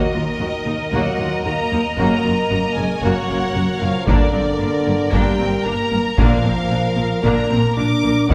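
Dark and epic, this short cut from a longer cinematic film score moves at 114 BPM in a straight 4/4, with the violins, violas and brass sounding together from the opening moment. A rich, focused studio violin section carries the melody high above a warm, even second violin line. A distant viola section fills in the accompaniment, while a mellow French horn section and a clear, tight trombone section in the background hold sustained chords. Lush bowed cellos and woody double basses, both with vibrato, anchor the bass from 0.1 seconds. At 4.1 seconds a taiko ensemble enters with heavy sticks as the loudest part of the mix, while the harmony moves through Ebm, F#, Gm and Bb inside the reverberant space of a church or concert hall.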